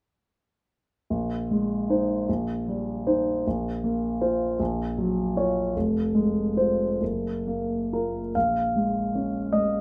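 A warm, polished grand piano sits up front in light reverb, present in this short excerpt cut from a longer impressionist classical piece. Alone from 1.1 seconds, it drifts in a rubato 6/8 at roughly 43-53 BPM in B-flat minor, tuned to A4 = 437 Hz, spanning F1 to F5 with a wistful, mysterious air. Suspended and seventh chords such as Bb9sus4 and Gbmaj7 color the opening passage before a new section arrives on Bbm7 at 8.3 seconds, and the piano stops at 9.8 seconds.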